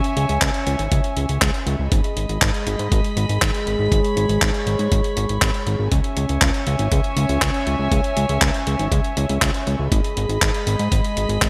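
Bright 1980s-style digital production, bathed in a lush hall reverb, gives this bittersweet, melodramatic italo disco excerpt its glossy sheen. A dark, nasal chamber string section holds reedy gut-string chords up front from the opening, alongside an overdriven 12-bit drum machine playing handclaps and hi-hat. A fat analog bass with sawtooth, square and sine tones and a filter pluck enters at 0.2 seconds, and a gritty, thumpy electronic kick joins at 0.4 seconds.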